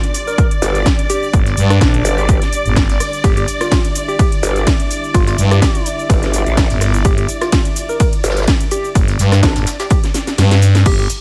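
A dry, up-front mix opens this aggressive, swaggering bass house drop at 126 BPM with a light swing, cut from a longer piece. Two growling basses drive it, a saturated, wobbling unison bass from 0.6 s to 9.5 s beside a thick FM bass that pumps with the punchy, overdriven electronic kick, while an overdriven house kit adds cracking snare and metallic hats and a very quiet brushed jazz kit sits underneath. A round, keys-like synth lead with warbling chorus and tape echo carries the melody over a moody analog pad and a focused bowed string section, before a drum fill arrives at 10.1 s and the kick drops out at 10.4 s.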